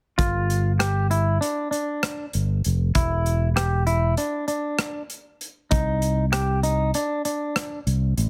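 Driving and bright, this short progressive instrumental cut from a longer piece moves in an uneven 9/8 with a straight feel, its chords shifting from G5 to E7(no3) at 3.0 seconds and on to Cmadd9. A clean, twangy picked electric guitar plays arpeggios until 7.8 seconds over a fingered electric bass that sounds direct and amped, while a polished modern drum kit in a small, airy room adds hi-hat, rim click and a punchy kick. The whole band sits up front in a heavily compressed, radio-style mix with light reverb.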